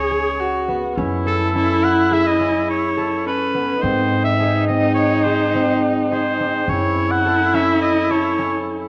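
Set in a straight 5/4 at 105 BPM, this short contemporary instrumental cut from a longer piece feels restless and hypnotic, tuned slightly low to A4 = 438 Hz. A bright, classical-style oboe carries the solo melody up front, while a dark, bowed viola played by one player sings an expressive second line with vibrato and portamento. Beneath them, a mellow concert harp rings out fingerpicked arpeggios and a woody pizzicato upright bass with steel strings anchors the low end. The harmony moves from an opening C#5 through F#m7 to G# at 3.8 seconds as the music shifts into its second section, then settles on F#m at 6.7 seconds. A moderate recital hall reverb surrounds the ensemble, and the whole recording carries the worn, warbling pitch drift of old cassette tape.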